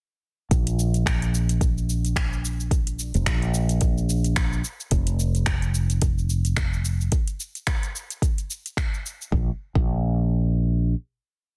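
A fretless electric bass sits up front with long gliding notes, touched by subtle chorus and sidechain pumping, in this meditative, mystical organic downtempo piece at 109 BPM in 4/4 with a 16th-note swing. Beneath it, a deep, soft electronic kick and a produced afro-pop kit of metallic hi-hats, shaker, finger snaps and a softly clipped snare build a layered groove that runs until 9.3 seconds. The kick stops at 9.9 seconds and the bass holds a final note until 10.9 seconds, all set in a digital ambience with a dense, heavily limited modern master.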